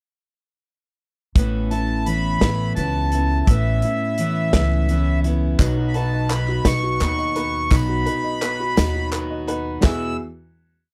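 The sound is dry and close, in the manner of a 1970s studio recording with little reverb, giving this short, complete indie folk piece an intimate, up-front feel as it builds toward something anthemic and uplifting. In a slow 6/8 at 57 BPM, a loose acoustic drum kit with a tight kick and medium-tuned snare sets the groove at 1.4 seconds, together with a growly, woody pizzicato upright bass locked to the kick, a full-bodied dreadnought guitar playing syncopated fingerstyle, and a boxy archtop guitar strumming sixteenths in open chord shapes over an Aadd9 chord. Just after, a reedy, airy accordion with slapback echo carries a motif-based melody in period phrases high above. At 5.6 seconds the harmony moves to B and the fingerpicked guitar drops out as the arrangement swells: a mellow, dark upright piano adds rising and falling sixteenth-note arpeggios, a clear but worn grand piano holds deep, open-voiced chords in the background, and hollow group handclaps and a jingly tambourine fill in the percussion. 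The piece resolves onto a final Eadd9 chord at 9.8 seconds.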